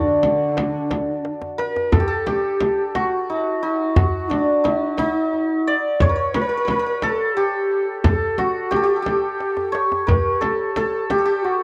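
In a straight 6/8 pulse, this stately Persian modal ensemble passage, cut from a longer piece, sets a large, saturated frame drum played with soft hands and a warm, close tombak beneath a bright, shimmering santur that carries the melody up front with tape echo. A breathy, hollow ney with vibrato plays a second line throughout, while a dark, bowed cello adds a brief sul tasto line that stops at 1.6 seconds. Drum fills arrive at 1.2 and 9.4 seconds, and the dry 1970s-style studio sound carries light reverb.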